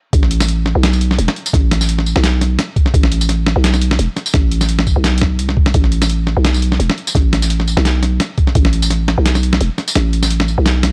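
Half-time drum and bass at 171 BPM in A minor, this heavy, cinematic excerpt from a longer piece rides a lightly swung 16th-note feel in 4/4 and plays throughout as a drop. A growling, buzzy 808-style bass with tube saturation sits up front, spanning E1 to C2 with a fast attack and decaying tail. Alongside it, an up-front, compressed, pitched-down boom bap sampler-style kit of hi-hat, medium-tuned snare and tambourine, with small room ambience, plays together with a thumpy electronic kick that stops at 8.6 seconds, all captured in a dry, gritty, cassette-tape hardware sound with a high-pass filter.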